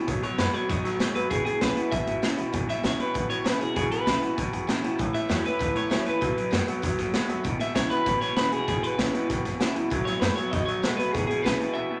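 A straight 4/4 beat at 195 BPM drives this retro, rollicking rockabilly excerpt in E major, where a gritty, saturated garage drum kit with a boomy kick and pumping small-room sound sits up front beside a twangy, slightly broken-up electric guitar riff and a bright electric lead melody soaked in spring reverb, while a thumpy pizzicato upright bass and a boxy, old-stringed ladder-braced acoustic guitar, picked rather than strummed, play along in the background over B7, E and A chords, all in a moderate large studio reverb, before a break at 11.8 seconds.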